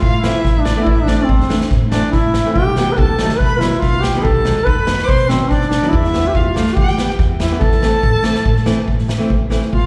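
Festive yet bittersweet, this klezmer excerpt moves at 142 BPM in A minor, with an up-front, mellow duduk carrying the folk-style melody in scooped, vibrato-laden notes while a distant, rich bowed violin adds a smooth second line above it. Beneath them, a woody, thumpy pizzicato upright bass and a fingerpicked nylon-string guitar with audible finger squeak move through Am, B7 and Em, while a street-band drum kit with a boomy kick and medium-tuned snare sits up front in an airy, big-room sound. Slapback echo touches the duduk, violin and guitar, and the performance is heard as a live gig through the venue's PA with light recital-hall reverb.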